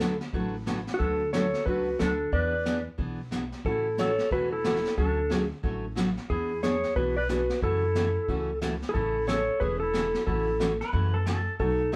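Down-home and playful, this western swing country excerpt moves at a brisk 181 BPM in A major, with a dark, compressed lap steel sliding the melody up front over a warm subtone clarinet line, picked dreadnought acoustic guitar, a woody, thumpy gut-string upright bass and a distant, roomy brush kit with a boomy kick, while a twangy pedal steel slips in briefly at 10.8 seconds.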